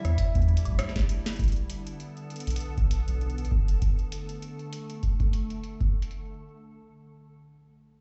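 Played through a big sound system in a bare room and wrapped in large studio reverb, this short, glitchy and eerie IDM fragment has a dull, booming sound with a muffled top end. A deep electronic kick sits up front over a crisp-snared, metallic-hatted analog drum machine with rim clicks and woodblock, its parts low-pass filtered and echoed by delay, while a drum fill runs from 0.8 to 1.4 seconds. Above a round sine sub bass that stops at 3.8 seconds, a glassy, ethereal FM pad sustains Em7 then Bm7 with ensemble chorus, 12-bit grit and sidechain pumping, and a gentle, warbling keys-like lead with chorus and delay sounds only briefly in the background at the start.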